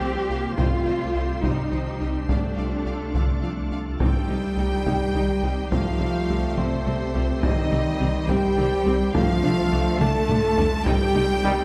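This brooding, relentless hybrid orchestral and electronic film cue, cut from a longer piece, opens with everything but the drums and brass at once. Two distant bowed violin sections share the melody and a second line, joined by a lush viola accompaniment, an organ-like pad with ensemble chorus and built-in reverb, and a very quiet, tight sequenced synth playing driving, detuned arpeggios. Underneath, a woody cello section, a background double bass section, a punchy sub bass with a pitch-drop attack and a rubbery, hollow square-wave bass riff build a heavy low end in 6/8. Taiko drums struck with hard sticks enter at 0.6 seconds from the back of a large room, and at 4.0 seconds a dark, roomy French horn section and a clear trombone section add sustained chords. A drum fill arrives at 10.0 seconds, and a moderate scoring stage reverb places the whole ensemble in a cinematic space as the Cm-centred progression cycles through Fadd9/C and Dm/C.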